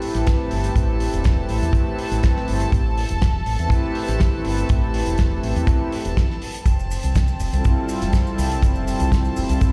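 A fingered electric bass with an envelope filter and tube saturation sits up front alongside a tight, dry kick drum in this sensual, cosmic nu-disco excerpt at 122 BPM in A minor, where a damped 70s drum kit adds hi-hat and a fat, rolled-off snare, a detuned sawtooth analog pad with soft attack and long release drifts through chorus, cassette tape and tape echo, and an earthy, bowed chamber string section with light vibrato pumps to a sidechain over Am9 before moving to Fmaj9 at 6.7 s, when maracas and group handclap join in the background, all heard with little reverb as if played on a big sound system in a bare stone room.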